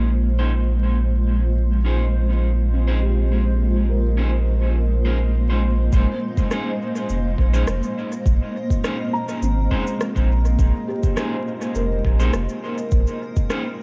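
A hazy, meditative ambient dub passage at 103 BPM opens on a blurred, evolving granular pad holding a Bbm11 chord, with soft, felt-muted upright piano arpeggios carrying dub echo and audible action noise, and a round, up-front sine sub bass underneath. From 0.4 seconds, dark, slightly broken-up picked guitar stabs, also echoed, drift in under a dusky production layered with vinyl crackle. At 5.9 seconds, a compressed, pitched-down, thumpy overdriven kick enters alongside an electronic cabasa and rim click set in a small room, giving the loosely swung groove a muffled pulse.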